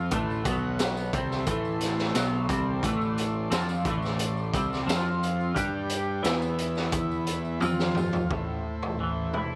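A buzzy vintage combo organ holds sustained chords in the background as a twangy, flanged, double-tracked clean electric guitar riff and a fuzzy, overdriven picked bass open this dark, hypnotic psychedelic rock passage in A minor at 88 BPM, joined at 0.1 seconds by a gritty, saturated garage drum kit with a punchy kick and high-tuned snare, and at 0.3 seconds by a very quiet jingly tambourine, with a drum fill from 7.6 to 8.3 seconds leading back to A minor under studio reverb.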